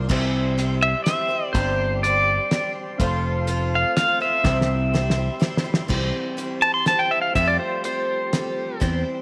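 A jangly folk-rock and heartland-rock excerpt in 3/4 at 124 BPM opens in C major with a shimmering, octave-doubled twelve-string acoustic guitar, a very quiet, woody upright piano, a lightly overdriven tonewheel organ turning on a slow rotary speaker in the background, and a growly, punchy electric bass up front, with a cloth-damped, thuddy drum kit of dark cymbals and fat snare joining at once. At 0.8 seconds a clean, compressed pedal steel guitar takes the melody with fingerpicks, slide and volume swells, while the chords move from C through Gsus4 and F. After a drum fill the piano stops at 5.9 seconds and the pedal steel steps forward into a solo as the harmony moves from C to an Fadd9, all set in a moderate echo-chamber reverb.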